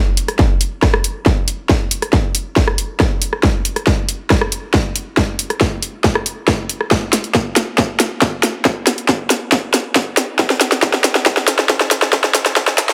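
Heavy wobble dubstep in a half-time feel, aggressive and weighty, this drum-only fragment builds from the start as a bright-hatted electronic kit with a huge snare, rim clicks and high-passed hats is joined by a distorted, tape-warm layered kick, both up front in a small room under light reverb, through a continuous drum fill and filter sweep.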